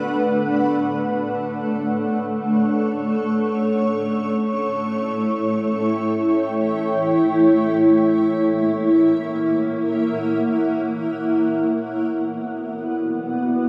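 A lone granular cloud pad, blurred and detuned with a slow attack and long release, floats up front in free time through Dmaj7, A7 and F#7 before settling on Bm at 11.4 seconds, its tape echo and built-in reverb dissolving into a vast, echoing cathedral space in this melancholic, spacious ambient fragment in B minor, tuned to A4 = 438 Hz.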